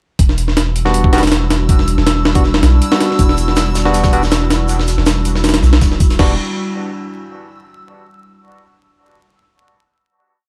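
Dark and nostalgic, this short drum and bass piece in jungle style runs at 160 BPM in E minor, opening at 0.2 seconds straight into a drop where a gritty, pitched-up breakbeat sampler-style kit with a thumpy kick and high-tuned snare sits up front, heavily chopped, alongside a deep, round sub bass playing long gliding notes over an Em9 chord. A warbling lo-fi pad with chorus holds sustained chords while a barky tine electric piano adds sparse echoing stabs, one shape moved in parallel, and a reversed, dreamy granular texture holds a single high note in the background. At 3.2 seconds a loose acoustic indie kit joins quietly with a looped, edited breakbeat of hi-hat, shaker and snare, before a final chord closes the piece over vinyl crackle and studio reverb.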